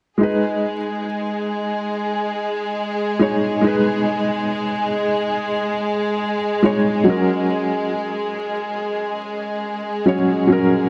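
Brooding and smoky, this trip hop excerpt at 70 BPM in G# minor, with a swung 16th-note feel, pairs a soft, intimate felt-muted upright piano playing accompaniment with tremolo against lush, bowed sustained chords from a warm studio violin section with vibrato, both coloured by vintage 12-bit sampler grit and set in a dark production with vinyl crackle and moderate plate reverb, as the harmony moves from G#m to F# at 7.1 seconds.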